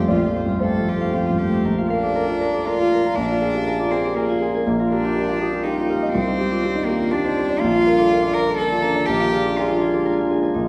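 Hopeful and intimate, this neoclassical piece for piano and strings moves at 122 BPM in a rubato 3/4, set in Bb major and tuned slightly below standard pitch. A dark, mellow baby grand sits up front as the accompaniment, its natural tone fading with a short sustain across a span from deep bass to the upper middle register. A single bowed cello carries the second line close and up front, its sul tasto playing clear, nasal and floating, with a soft attack. A Celtic harp rings out fingerpicked arpeggios that reach high above the ensemble, while a deep, moody pad in the background holds sustained chords, its detuned, warbling vintage character colored by chorus and its own reverb. The harmony circles around Bb, passing through Bb7, Ebadd9/Bb and Cmadd9, and the whole cut sits in a moderate hall-like space that lends a gentle bloom to this short passage taken from a longer work.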